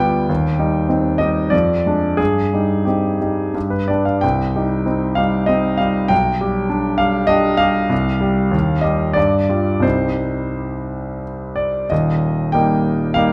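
This romantic classical character piece for solo piano has a stormy, brooding mood, moving in a rubato 3/4 at 86-102 BPM in C minor. The concert grand sits up front with a clear, intimate tone, deep bass reaching down to Eb1, long sustain and audible action noise, all set in a moderate recital hall reverb. Over its 13.3 seconds, this fragment of a longer work circles C minor harmonies through a diminished chord and open fifths before turning toward Eb at 11.9 seconds, where a new section begins.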